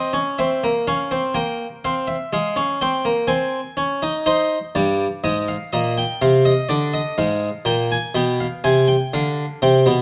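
A baroque-style classical two-part invention for solo harpsichord unfolds at a measured 62 BPM in 4/4, its contemplative, serious mood carried by a Flemish-style instrument with a brilliant, plucked tone reinforced by octave strings. Sitting up front and captured by close, detailed microphones with light reverb, the harpsichord spans G2 to Ab5 as the harmony moves from C7 through Fm/Ab, Cm and Dm7b5/C to G7/B by 8.1 seconds. This short passage is cut from a longer piece.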